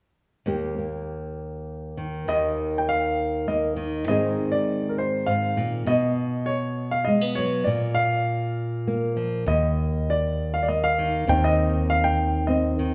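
A nylon-string guitar opens the excerpt at 0.5 seconds, playing a warm, thumb-plucked classical accompaniment on fresh strings. This is a tender, nostalgic folk piece in Eb major, moving at 100 BPM in a straight 3/4 lilt. At 2.3 seconds a baby grand piano enters up front with a warm, natural melody in its upper register, carried over chords that move through Eb, Ab, B5, Bb5 and Cm/Eb. A fretless electric bass joins at 9.5 seconds, holding a low Eb with a dark, round and direct tone. The whole trio sits close and present within a lush recital hall reverb, giving the feel of a church or concert hall.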